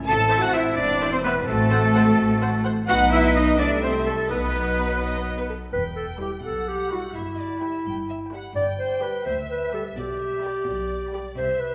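Bathed in a wet concert-hall reverb, this mischievous, magical cinematic cue in E minor moves at 85 BPM in 6/8, with punchy French horns holding sustained chords until 5.5 s while a lush violin section carries the expressive, portamento-tinged melody, a clear oboe, a crisp-attacked flute group and a very quiet, woody second violin section trace second lines, rich violas accompany, an intense cello section and smooth, distant double basses anchor the bass, and at 5.7 s a roomy, up-front clarinet enters with its own second line as the chords move through E minor and G major.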